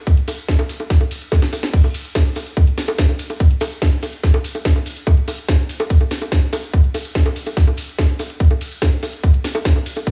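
Trance excerpt at 144 BPM in a straight 4/4 with a hypnotic, alien mood, built on a tight, up-front electronic kick drum and a layered garage drum kit of bongos, crash, hi-hat, ride and a cracking snare, both in small room reverb, with a grainy, mellow shekere set distant in the background, a drum fill at 1.3 seconds, all within a digital small-room ambience.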